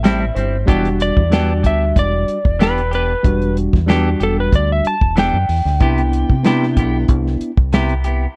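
Straight-eighth soul blues at 94 BPM in 4/4, this short excerpt from a longer piece sits in E minor with a smoky, mournful mood. An electric slide guitar carries the melody between A4 and A5, its tone slightly broken-up and compressed, sitting up front until 7.1 seconds. A tine electric piano, clean and heard through its built-in speakers, opens with a brief fill and then accompanies, while a bright, twangy clean electric guitar adds scooped, picked stabs bathed in spring reverb. Underneath, a deep dub fingered electric bass gives a round, dark foundation, and a soul drum kit of hi-hat, tight kick and medium-tuned snare, smooth with a rolled-off top, is the most prominent part in the mix. The harmony moves from Am7 to Em7 and settles on Cmaj7 at 5.8 seconds, all captured in a dry, close 1970s-style studio sound with little reverb.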